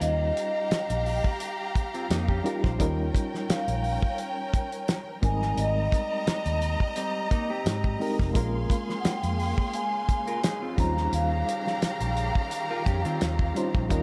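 Lush 1970s-style soul at 86 BPM with a gentle 16th-note swing, bittersweet and silky, where a mellow soft-mallet vibraphone carries the melody over a distant, vibrato-rich violin section, a reedy, slightly out-of-tune electric piano with fast tremolo, a round, foam-muted electric bass and an up-front, cloth-damped drum kit with a fat snare and tight kick, while a dark, clean electric guitar riff steeped in spring reverb enters at 1.9 s and veiled con sordino strings add sustained chords in the background from 8.4 s, as the harmony moves from Eb13 through Abmaj9 and Bbm7 and back to Eb13.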